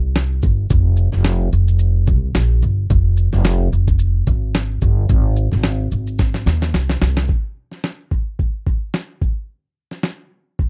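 Acoustic pop in F minor at 109 BPM with a light sixteenth-note swing, tender and reflective, cut from a longer piece. An up-front pizzicato upright bass, woody and dark, moves between F1 and Eb2 until 7.3 seconds, while a dusty soul sampler-style kit of kick drum, shaker and snare enters at 0.2 seconds, gritty and compressed with a fat snare and a tape-warm tone, re-recorded in a large room. A drum fill from 6.2 seconds leads into a new section where the drums play alone until 10.7 seconds, all captured in a dry, close 1970s-style studio sound.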